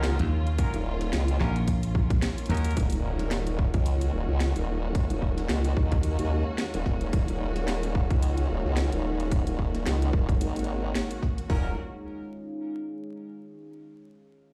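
Glitch hop with a gritty, playful swing, opening on a drop where a formant-sweep wobble bass and a dry, punchy thumbed slap bass sit up front over two overdriven, layered electronic drum kits, one with a tight kick and toms, the other with a cracking snare, both with bright hi-hats. Clear, vintage horn stabs with delay punctuate the opening and return briefly near the end, while a lush, bowed string section holds sustained chords with sidechain pumping until just before the close. After an electronic impact in the background at 2.8 seconds, a deep, moody sawtooth pad drifts in at 5.7 seconds, steeped in chorus and its own reverb, all heard as if played through a big sound system in a bare room with vinyl crackle.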